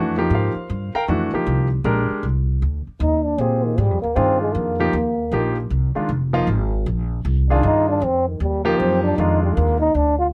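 Cool and searching, this modal jazz waltz in 3/4 swings lightly as a grand piano with short sustain voices an F9sus4 chord over a woody, growly pizzicato upright bass, both placed up front. At 3.0 seconds a cup-muted trombone enters to take a veiled, breathy solo with scooped notes and a soft attack, its whispered, vintage tone sitting intimately close, and the piano drops out at 9.8 seconds. The dry, detailed sound carries lossy compression artefacts, and the recording is cut from a longer piece.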